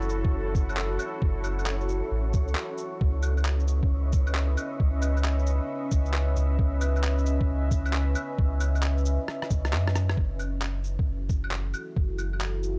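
A melancholic, rainy future garage excerpt at 134 BPM in C# minor opens with several layers together: a deep, detuned sawtooth pad with chorus and reverb, a round, soft dub sub bass with tube saturation (both pumping to the sidechain), muffled, pitched-down shaker, claves, handclaps, cabasa and rim click, and a breathy, wind-like noise texture in the background. A compressed, thumpy kick sits up front from 0.2 s, riding a swung sixteenth feel over F#m7 and C#m9. A drum fill arrives at 9.3 s, and the noise texture stops at 10.2 s as the harmony returns to F#m7, all within a dry, gritty sound of digital ambience and tape-tinged sampler drums.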